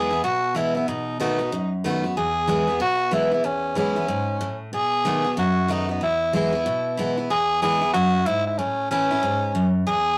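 Swung eighth notes in a brisk 4/4 drive this rowdy, upbeat rock clip, cut from a longer piece and lasting about 10.2 seconds. A growling tenor saxophone carries the melody up front as a solo, its raspy, gritty tone topped with a smooth upper edge and a touch of vibrato in a pop-leaning style. Beside it, a picked steel-string acoustic guitar on a dreadnought body supplies the accompaniment, sounding full-bodied with the crisp ring of fresh strings. The harmony moves between E and B7 before turning to A near the end, as a repeated section begins again at 7.3 seconds. The sound is rough and rehearsal-room in character, with warm saturation and a moderate studio reverb.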